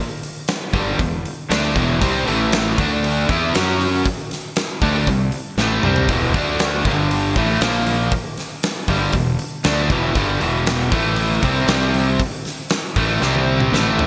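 Aggressive and driving, this hard rock passage, cut from a longer piece, opens with a huge arena drum kit at 0.2 seconds, its fat snare and punchy kick up front and treated with gated reverb, with fills at 5.6 and 13.2 seconds. From 0.7 seconds two picked, overdriven electric guitars play the riff: a bright distorted one up front and a crunchy one with ensemble chorus sitting in the background, while a growly fuzz bass played with the fingers adds a warm, overdriven low end. The sound is a bright 1980s-style digital production with a moderate plate reverb, moving through power-chord changes built around E minor.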